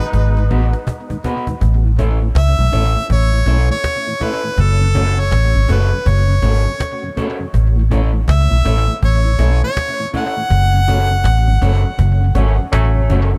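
A woody, hard-handed cajon with faint snares and tape echo opens with a drum fill under a round, punchy bass that sits up front, setting an uplifting, swung 81 BPM roots reggae groove in 4/4 while a clear harmonica with light vibrato carries the melody through dub echo until 12.7 s, a vintage horn section adds a brief second line at the start and again from 12.3 s, a mellow tonewheel organ with chorus vibrato and slow rotary speaker sits in the background, and a dark, slightly broken-up, lo-fi electric guitar through a small old amp joins at 0.5 s, the dry mix moving from G#m7 through A and F#m to a band accent at the close.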